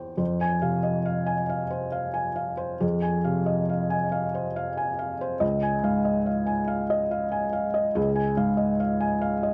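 A felt-muted upright piano opens this short neoclassical minimalist fragment, played solo from 0.0 to 9.5 seconds and cut from a longer piece. The mood is reflective and melancholic, moving in a slow, rubato 6/8 at about 47 BPM counted in dotted quarters, in F minor. The instrument sounds soft and mellow, its thick felt lending an intimate, muted quality, and it sits up front in the mix. Its range spans from Db2 to Ab5. The harmony rests on F minor before shifting to Dbadd9 at 5.4 seconds. Light reverb and a dark, warm production wrap the piano in a hushed, close atmosphere.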